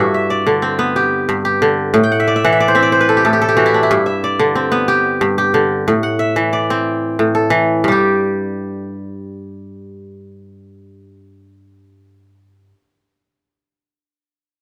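A solo kora opens this fragment of a longer West African traditional piece, its fingerpicked strings bright and ringing, spanning from G2 up to G5. The tempo is 122 BPM in a straight 12/8 feel, and the mood is warm and hypnotic as the harmony alternates between G and A minor. Near 2.0 seconds the kora slips in a short fill that runs until about 3.9 seconds. At 7.8 seconds the music moves into a new passage where the chords fall away, and the instrument's crisp, acoustic voice carries the line until the recording ends at 12.8 seconds. Close, detailed microphones keep the kora up front, with only a light reverb around it.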